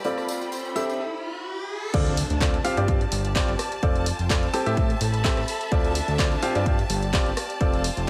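A clear, woody upright piano riff sits up front in this bittersweet, energetic piano house excerpt at 127 BPM, its sidechain pumping and dub echo set against rich bowed violins and a warm background string section with portamento, while a tambourine and a background riser open the first second over F6 and Am7 chords. At 1.9 seconds the drop arrives with an impact, a tape-warm layered electronic kick and a fat, detuned sawtooth bass, moving through Dm7 and G7sus4, while the punchy analog drum machine, running since 0.2 seconds, supplies handclaps, rim clicks, hi-hats and crash under low-pass filtering. The mix is echo-heavy with light studio reverb, and the pumping strings and piano give the groove its lift.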